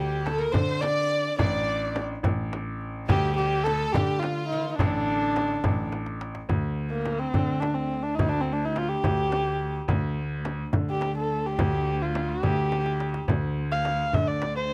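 With little reverb, this melancholic, soulful Persian modal ensemble piece in D dastgah shur moves at 71 BPM in 6/8, as a dark, nasal kamancheh carries the melody up front with vibrato and portamento over the clear, short-sustained bass of a grand piano, a tight, dry tombak and a small, bright frame drum in the background, while a plucked, woody oud and a soft, floating violin section share a second line until 5.9 seconds, a drum fill leads into the next section at 6.5 seconds, and a distant, expressive cello enters there on a low drone.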